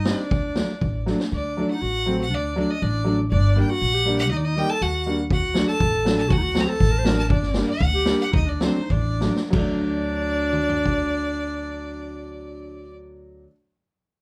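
Bittersweet and soulful, this klezmer piece in D phrygian dominant moves in a straight 2/4 at 91-120 BPM. A rich, earthy, slightly distant violin with light vibrato carries the melody over a clear, classical-style clarinet second line, while a dark, thumpy pizzicato upright bass and a woody upright piano accompany a D, Gm and Eb progression. A street-band drum kit with a boomy kick and dark cymbals plays briefly at the start, returns at 5.3 seconds and stops at 11.0 seconds. The band slows from 7.3 seconds into a drum fill that ends at 9.5 seconds, all set in a moderate studio reverb.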